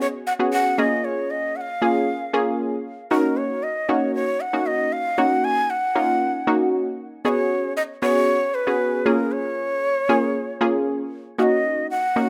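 Pop in Eb minor at 116 BPM, driving and confident, this short cut from a longer piece pairs a breathy, bright shakuhachi melody with dub echo and a crisp chiff against an up-front analog pluck accompaniment whose round, warbling tone is thickened by chorus. Both parts play throughout the 12.3 seconds over a cycle of Db7sus4, Bbm7 and Ebm7 chords in steady 4/4. The sound sits in moderate studio reverb with the rough feel of a home demo mix.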